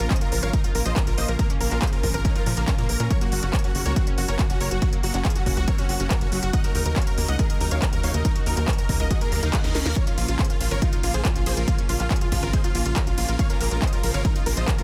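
A dense, heavily limited mix carries this soaring, driving uplifting trance excerpt at 140 BPM in Bb minor, where a huge detuned supersaw lead with delay rides over a chorused background pad, a punchy arpeggiated pluck with tape echo, and a tight sequencer bass with tube saturation, all pumping against an overdriven, up-front kick and a techno kit with cracking snare and smooth hats, while a reverse cymbal at 9.3 seconds and a drum fill lead into the return to Bbm at 10.0 seconds.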